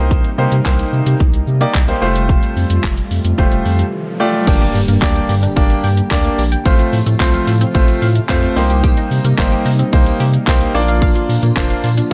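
Dance-pop at 110 BPM in G minor, energetic and confident, built on a clear, polished concert grand piano up front, a saturated sub bass, a shimmering retro pulse-width pad in the background, and an electronic drum kit with a punchy kick, metallic hats, handclaps and shaker, with sidechain pumping on the piano, pad and bass. A background riser builds over a brief break at 3.9 seconds and lands on an impact at 4.5 seconds, where a hollow, bouncy square-wave pluck enters with chorused, detuned arpeggios through digital delay, joined by a very quiet, jingly tambourine in a distant large room. The dry, loud mix moves through Cm7, Fadd9, Gm, F/A and Bb, and the clip is cut from a longer piece.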